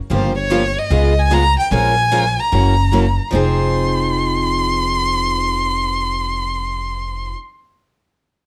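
Set in a light reverb, this short fragment of bittersweet, virtuosic acoustic string swing in F minor moves at 149 BPM with a 64% swing on the eighths: an up-front bowed violin carries the melody with a soft attack, vibrato and expressive portamento, a woody, thumpy pizzicato upright bass on gut strings holds the low end up front, and two picked steel-string guitars supply the accompaniment, one boxy and bright, the other fresh-strung and set in the background with audible finger squeak.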